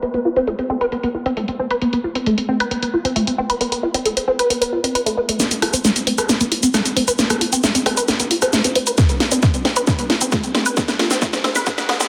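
Hypnotic and relentless, this driving peak-time techno passage, cut from a longer piece, rides on a squelchy, resonant blip pluck riff treated with phaser, analog chorus, sidechain pumping and tape echo, over an up-front layered drum kit of hi-hat, rim click, shaker and a cracking snare re-recorded in a large room. A filter sweep moves across the synth through both sections, and from 5.4 seconds a build-up and drum fill join in, with a punchy, tape-warm analog kick arriving at 9.0 seconds and dropping out at 11.8 seconds. A wet plate reverb and a dense, heavily limited modern master give the whole passage its pressure.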